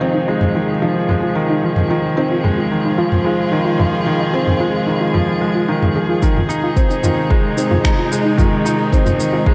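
Hypnotic and moving, this piano and strings electronica builds at 111 BPM in F minor, resting on an Fm7 chord as an up-front, felt-muted upright piano repeats a mellow, intimate riff through digital delay. A distant string quartet holds bowed chords with vibrato and portamento, while a soft, round pluck spins dark arpeggios in the background under lush chorus and delay, both breathing with sidechain pumping above a barely audible round analog bass. A tape-toned organic electronic kit of finger snaps, shaker and toms ticks along from 0.4 seconds, and a deep, layered electronic kick lands up front at 6.2 seconds, all set in a dark production with a concert-hall reverb.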